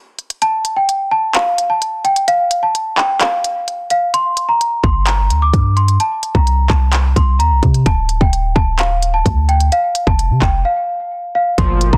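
A bell-like, close-miked celesta carries the melody through a low-pass filter over an electronic trap drum kit of handclaps, crisp hats and a hard-clipped kick with vintage 12-bit sampler grit, setting a menacing, brooding half-time hip hop groove at 129 BPM, while a deep, boomy 808-style bass enters at 4.8 seconds and a glossy, chorused polysynth stab flashes at 11.6 seconds, set in light reverb with a dense, heavily limited modern master.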